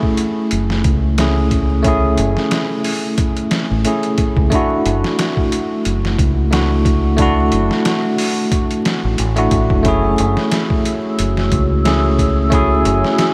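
Trip hop at 90 BPM in F# minor, this brooding, cinematic fragment from a longer piece moves with a lightly swung 16th-note feel. A bell-like tine electric piano sits up front from the start, bright and clean, its chords shimmering through harmonic tremolo and tape echo as the harmony shifts from a rootless F#m7 to Dadd9 over F# at 4.5 seconds and back to F#m7 at 9.9 seconds. Beneath it, a gritty, pitched-down sampler-style drum kit with a thumpy kick, medium-tuned snare and hi-hat is compressed and overdriven, while a deep dub fingered bass, dark and round with tube saturation, enters at 0.5 seconds. Near the close, at 10.6 seconds, a warbling, nostalgic lo-fi pad arrives with slow-attack sustained chords, detuned and mellow under chorus and its own built-in reverb. The dreamy mix is soaked in a huge ambient reverb and dusted with vinyl crackle.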